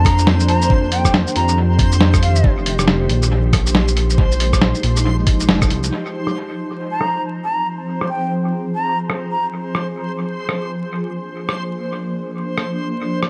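An echo-heavy mix with light reverb and vinyl crackle sets a nocturnal, melancholic future garage fragment. A muffled, compressed sampler-style kit of hi-hat, rim click, shaker and snare swings under dub echo, while a blurred granular cloud pad pumps through Cm9, Fm9, Ab6 and Bb9 beneath a reversed, bright swelling texture. A deep, rumbling detuned saw bass with tube saturation and a knocking, tape-warm electronic kick drive the opening until they drop out near 5.9 seconds, when filter sweeps move across the drums and pad, and an airy wooden flute with vibrato and analog delay plays short phrases at the start and again from 6.9 seconds.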